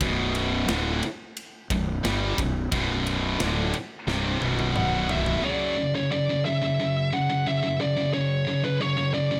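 This heavy metal excerpt in B minor opens at 89 BPM in a straight 4/4 with an aggressive, epic drive, as a bright, high-gain guitar riff sits up front beside a second tight, distorted guitar riff further back in the mix. A growly, fuzz-laden fingered electric bass anchors the low end with an overdriven snarl, while an acoustic drum kit in a big room punches through with a tight kick, a medium-tuned snare, toms and a bright ride cymbal. The drums launch into a fill from 4.1 seconds, and at 4.8 seconds a darker high-gain lead guitar joins with a picked melody between B4 and F#5. At 5.4 seconds the harmony moves from Bm to F#5, the rhythm guitar, bass and drums stop, and the main guitar carries on alongside the lead until the cut at 9.4 seconds. Studio reverb lends the whole passage a broad, roomy scale.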